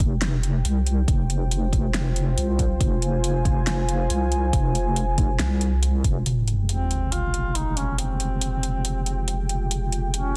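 This deep dubstep excerpt opens with a dark, detuned analog pad holding an Fmadd9 chord above a saturated, square-and-sine wobble bass that sits up front. Beneath them, a layered electronic kick and a deep house kit with a fat snare and metallic hats set a half-time groove at 139 BPM, swung on the sixteenths, with tape colour on the drums. The mood is heavy and meditative in F minor, and both the mellow pad and the bass carry chorus. The kick stops at 6.1 seconds, and at 6.3 seconds an electronic sub drop lands as an impact to open a new section. From 6.7 seconds a distant, roomy duduk plays a folk-style solo line with vibrato and a soft attack, trailed by dub echo, all within light reverb and a dense, heavily limited modern master.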